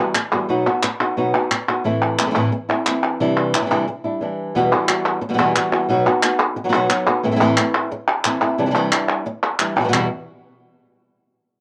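Flamenco in E minor at 178 BPM in a straight 4/4, this short excerpt from a longer piece feels passionate and intense. A fingerpicked flamenco guitar carries the melody from the opening moment to 10.1 seconds, its acoustic tone up front and warm, ranging from E2 to F#4 over a progression that moves through B, Am, Cadd9 and Emadd9. Palmas hand claps sit just as close, crisp and band-limited with a vintage edge, running from 0.1 to 10.0 seconds. A brief break falls between 3.9 and 4.5 seconds before the opening phrase returns, and the final stretch drops into chordless territory. The home cassette recording places both parts in a small room with moderate reverb, giving the performance an intimate, close-quarters character.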